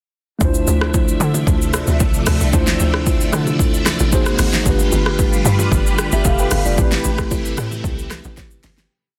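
Punchy, overdriven deep house drums with a fat snare, dark hats, steady shaker and syncopated rim drive this late-night, deep amapiano piece alongside a hollow, bouncy log drum bass that bursts and slides beneath a mellow tine electric piano holding rootless chords with short fills, a lush vintage string machine pad pumping through phaser and ensemble chorus, and very quiet, close congas and bongos, all in a dense, heavily limited mix that fades out from 6.8 seconds before a closing drum fill at 8.4 seconds.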